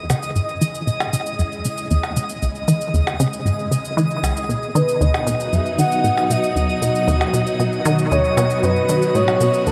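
Expansive and cosmic, this cut from a longer piece of ambient, sequencer-driven space music moves at 116 BPM in C# minor, shifting from C#m to B at 4.5 seconds inside a huge, long-tailed reverb. A juicy, squelchy resonant blip pluck carries the riff up front with chorus and tape echo, while a swirling, warbling string machine fades in with phased sustained chords, a twinkling granular shimmer hangs high above, and cabasa and electronic percussion blips tick through tape echo. At 4.8 seconds a smooth, expressive synth lead enters with vibrato and a dark edge to sing the melody, and a filter sweep colours the arpeggiated sound.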